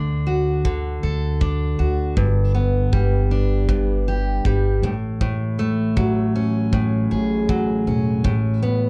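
A dark, lightly reverberant sound frames this easy-going, carefree acoustic pop excerpt at 79 BPM with a gentle sixteenth-note swing, where an up-front, full-bodied jumbo steel-string guitar picks chords from D through G and F#madd9/A to Aadd9 with audible finger squeak, a woody pizzicato upright bass sits underneath, and a tight, airy kick drum enters at 0.6 seconds.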